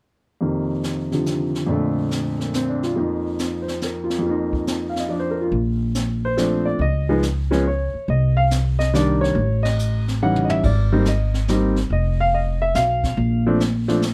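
Swung eighth notes roll along in a lilting three-beat waltz feel, setting up a jazz piano trio in a warm, swinging mood. From 0.4 s the upright piano carries the melody with a woody, natural tone placed up front, hovering over suspended dominant harmony before the chords open into lush major ninths and a sharp-eleven color. Brushes sweep a small-room kit beneath it, with dark cymbals, a high-tuned snare and a boomy kick sitting further back. The plucked upright bass arrives at 5.5 s, growly and close with the bite of steel strings. The whole band hits an accent at 9.6 s, and a short drum fill follows, all inside light reverb and a dark, warm production in this passage cut from a longer piece.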